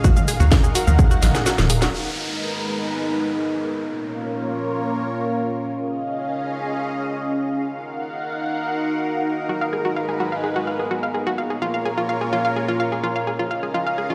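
Melodic techno with a driving, cinematic mood, this excerpt opens on a punchy, up-front electronic kick, a house kit with cracking snare, hi-hat, shaker and toms, and a tight, dark sawtooth sequencer bass, with the kit and bass pumping under a lush, thick, bright unison pad. The kick drops out at 1.1 seconds, and a drum fill and break close this groove at 1.9 seconds, when the kit, the bass and the round, chorused analog pluck arpeggios drop out, leaving the pad alongside a falling electronic downlifter. A warbling, nostalgic lo-fi pad joins at 2.8 seconds and the tape-echoed pluck returns at 9.5 seconds, all within a huge ambient reverb that suggests a big, bare room.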